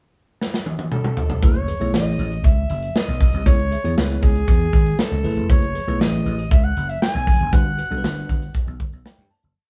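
Funky and slick, this short early-eighties boogie funk piece moves at 118 BPM in a straight 4/4 feel, set in F# dorian. A modern studio drum kit opens with a fill during the pickup bar, its punchy kick and medium-tuned snare sitting up front in a mid-tempo boogie beat of hi-hat, kick, snare and toms. At 0.9 seconds, still within the pickup bar, a breathy alto saxophone enters to carry the melody with raspy, scooped hook phrases in a pop style. At 1.4 seconds the verse begins as a vintage slap bass enters with a fat, growly, syncopated boogie line full of slides and chromatic approach notes, while a bell-like tine electric piano pushes drop2 chord voicings through its built-in speakers, adding grace notes and short fills. The chords move from F#m11 to C#m7 and back before landing on Gmaj7. The band sounds as if playing live in one room with moderate studio reverb, and the piece fades out from 7.5 seconds, closing on a last electric piano fill.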